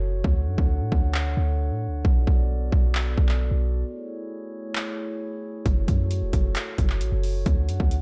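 Dry and dark, this short cut from a longer trap piece sits close, with little reverb around it. The mood is brooding, and the half-time hip hop feel moves through Dmaj7, Bm7, Amaj7 and F#m before returning to Dmaj7. A glass harmonica holds sustained chords, its glassy, ethereal tone arriving with a slow, smooth attack and sitting well behind the low end. Up front, a deep, boomy 808-style bass with a sine core and a noise layer hits with a fast attack, then decays in a mellow way. The electronic trap kit enters at 0.2 seconds with a hard-clipped kick, metallic hi-hats and handclaps, its tape-warm sound carrying the air of a large room. The opening stretch up to 5.7 seconds plays as a break.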